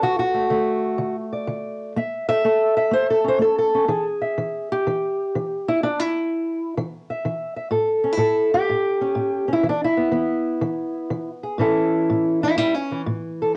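A swung eighth-note feel at 124 BPM in 4/4 sets a laid-back, rollicking pace for this short excerpt of acoustic country blues in A major, cut from a longer piece. A single fingerpicked, ladder-braced acoustic guitar carries everything, sitting up front with a dark, woody, boxy tone and the dull ring of old strings, ranging from A2 up to E5. The harmony moves through D, A and E before settling back on A, and at 11.6 seconds the guitar breaks into a brief steel-string solo that runs to the end at 13.6 seconds. The guitar has the grain of cassette tape, and the home recording carries a moist studio reverb with a short tail and a top end that fades out early.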